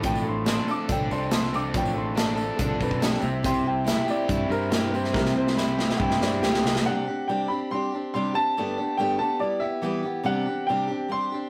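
A straight 4/4 pulse at 141 BPM drives this hopeful, open-road slice of folk rock and heartland rock, cut from a longer piece and captured as a rough rehearsal-room recording with moderate studio reverb. A natural country drum kit sits up front with a punchy kick, medium-tuned snare and hi-hat, joined by a jingly, very quiet tambourine from 0.2 seconds, while a fingered electric bass adds a round, amped low end. A grand piano with long sustain carries the melody as a solo through the first 6.8 seconds, over a picked steel-string acoustic guitar whose finger squeak is audible, a double-tracked overdriven electric guitar riff, and reedy, lightly overdriven tonewheel organ chords turning on a slow rotary speaker with key click. A woody upright piano with audible action noise slips in brief intimate second lines, and a drum fill from 5.1 seconds leads into the next section. At 6.8 seconds the drums, bass, electric guitar, organ and tambourine stop, leaving the grand piano and acoustic guitar alone over chords moving from Csus2 through Gadd9 and Em back to Csus2.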